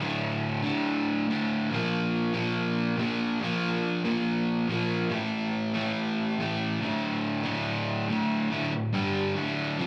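A crunchy, double-tracked overdriven electric guitar plays alone and up front from 0.0 to 9.9 s in this gritty, brooding rock excerpt at 141 BPM in D minor, its picked chords moving D5, Bb5, A5 and back to D5 before a brief turn to G5 at 8.9 s, the guitar carrying a slapback echo and heard through a live club PA in a short, wet room reverb.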